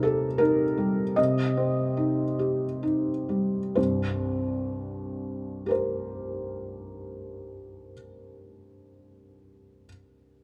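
Neoclassical minimalist piano with a wistful, intimate mood: this brief excerpt from a longer piece features a solo felt-muted upright piano, soft and mellow with audible action noise and placed up front, moving rubato in 3/4 across a range of C2 to Eb5 over a Cm7 chord that slows down through the first 3.8 seconds before shifting to C5 at 3.8 seconds, framed by light reverb and a dark production.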